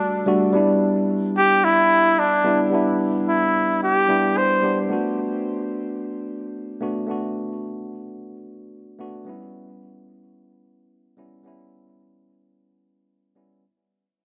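A clear flugelhorn with pop-style vibrato carries the solo melody up front for the first 4.8 seconds, its tape echo trailing behind as a clean tine electric piano, also up front through a combo amp and touched with tape echo, plays on until 13.7 seconds. This wistful, smooth chillout fragment moves with a gentle 16th-note swing over harmonies drifting from a rootless Em11 through G6 and Bm7 to Em6/G. A moderate scoring-stage reverb and small-room ambience surround the parts as the whole passage fades out.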